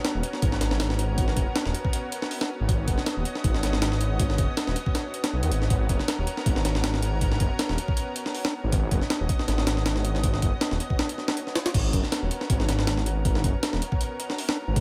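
A largely dry mix carries this atmospheric, frenetic drum and bass and jungle passage, cut from a longer piece, at 159 BPM in 4/4 with a light 16th-note swing, in G# minor tuned to A4 = 444 Hz. Up front, a gritty, compressed, pitched-up breakbeat sampler kit of thumpy kick, high-tuned snare, hi-hat and crash, tape-warm and set in studio reverb, drives throughout beside a menacing, saturated detuned saw bass that beats thickly from 0.1 s. Lower in the mix, a lush, bright unison pad with chorus and a slow attack sustains a G#m11 chord, and the kick falls away briefly from 11.0 s to 11.7 s before the section repeats.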